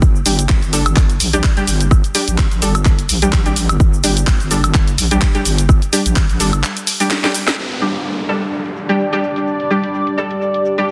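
Swaggering and bouncy, this bass house cut from a longer piece moves at 127 BPM in G minor with a 16th-note swing. A punchy electronic kick and a house kit with a cracking snare, hi-hats, handclaps, cabasa and woodblock sit up front, while a heavy, saturated wobble bass with chorus and sidechain pumping holds the low end until about 6.6 seconds. A bold, brilliant orchestra-hit-like synth stab built from detuned sawtooth layers cuts through from 0.3 seconds, carrying its own reverb and digital delay. After a drum fill, the arrangement turns at 7.6 seconds, bringing in an evolving, resonant sweeping pad and an electronic downlifter. A warbling, nostalgic tape-like pad with a lo-fi character joins shortly after, and the whole is mastered dense and loud with a light sense of room.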